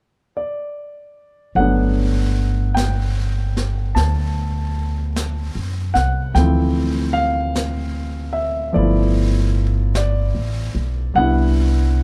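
A dark, lightly reverberant production with lossy compression artefacts frames this tender, late-night jazz ballad fragment in swung 4/4: a natural, up-front grand piano opens alone at 0.4 s, then a woody, thumpy pizzicato upright bass and a brushed kit of snare and hi-hat, sitting low in the mix, join at 1.6 s as the harmony moves through Gmaj9, Dm7, G13 and Cmaj9.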